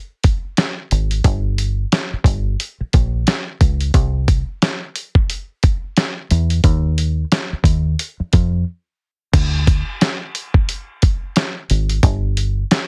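Moody and gritty, this short boom-bap hip-hop cut from a longer piece moves at 89 BPM in 4/4, with a 60% swing on the sixteenths giving it a loose, head-nodding lean. A sampler-style soul drum kit carries the groove from the start, its compressed, dusty character built around a thumpy kick, a medium-tuned snare, hi-hat and crash cymbal, all sitting up front. At 0.9 seconds a deep dub fingered electric bass joins, dark, round and punchy, with a foam-muted, direct-and-amped tone that ranges from G1 to F2 and also sits prominently in the mix. A brief break arrives at 8.7 seconds before the main section returns and runs to the close. The sound is dry and heavily compressed, with a radio-like quality that suits the gritty mood.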